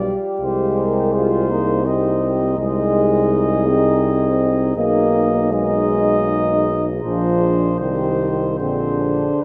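Bathed in a wet cathedral reverb that suggests a vast, echoing space, this elegiac, yearning brass band excerpt moves in a rubato 3/4 at 71-86 BPM, with a warm flugelhorn singing the melody over a mellow French horn section's second line, a soft-attacked euphonium and a tight, smooth-topped trombone section with light vibrato in accompaniment, and a roomy, up-front tuba anchoring the bass through hymn-like harmonies from Cm to Ab/C, Abm/Cb and Bb9 across 9.4 seconds.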